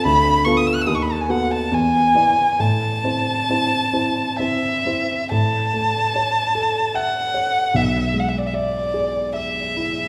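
Set in the lush reverb of a church or concert hall, this elegiac, solemn romantic classical duo in a rubato 3/4 at 61-77 BPM pairs a dark, woody solo violin singing the bowed melody with vibrato against a mellow, smooth grand piano accompaniment of vintage character and short sustain, both up front, as the harmony moves through shadowed chords to settle into A major at 5.3 s before this fragment of a longer piece ends at 10.1 s.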